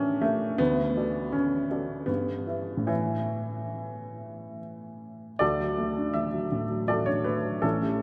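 Drenched in a cathedral reverb that rings for 5.6 seconds through a vast, echoing space, this short excerpt of a romantic classical character piece presents a dark, mellow baby grand piano, intimate and up front with audible action noise and short sustain, playing alone in a lyrical, warmly rubato three-four lilt as its A7b9 opening resolves toward D before a new section begins at 5.4 seconds.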